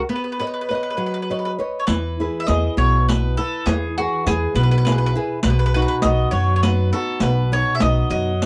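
Italian folk serenade in E major, sunny and lively, moving at 67 BPM in a straight 6/8 with a dry, close studio sound in the 1970s manner, cut from a longer piece. A fingerpicked flamenco guitar, warm and up front with audible finger squeak, and a round, double-strung picked mandolin carrying the melody open the music over a Badd9 break. At 1.9 seconds a woody, thumpy gut-string upright bass with transformer saturation and a riq with dark, band-limited jingles and hard hands join as the harmony settles on E before turning to B at 5.4 seconds.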